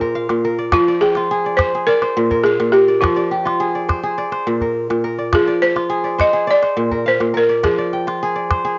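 A woody, buzzing balafon struck with rubber mallets carries the melody through analog delay and cassette grit, while a crisp, ringing fingerpicked kora spins arpeggios and a small, close calabash adds percussion in this hypnotic, flowing West African traditional excerpt at 104 BPM in F dorian, which sways between Bb and Fm under moderate spring reverb with the band-limited character of a home cassette recording.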